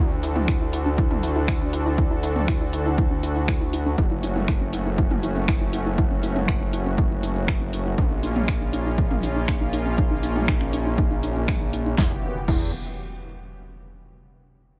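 Dark and dramatic, this melodic techno excerpt at 120 BPM pairs a thick, nasal unison pad holding chords over D, F#m and A#m with a warbling, lo-fi pluck arpeggio set back in the mix under a filter sweep and tape echo, while a gritty, distorted synth bass with sidechain pumping sits up front beside a punchy overdriven kick entering at 0.5 seconds and a deep house kit of fat snare, hi-hat, shaker, finger snaps, toms and crash, before an electronic impact lands at 12.0 seconds in an echo-heavy digital ambience.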